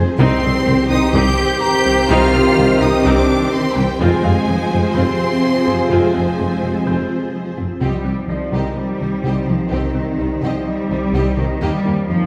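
A cinematic hybrid orchestral and electronic film score cue, tense and relentless, where a bright, focused violin section carries the melody over a second violin line and very quiet violas, while the cello section shares the low end with double basses and a very quiet tuba. Mellow French horns and dark, distant trombones hold sustained chords in the background beside a cloudy, evolving granular pad with its own reverb, as a tine-like FM synth pluck ripples through arpeggios and a brilliant grand piano adds a delayed texture far in the mix. The whole ensemble sits back in a wet scoring-stage reverb, moving from C minor to F minor and back before landing on E-flat near 11.6 seconds.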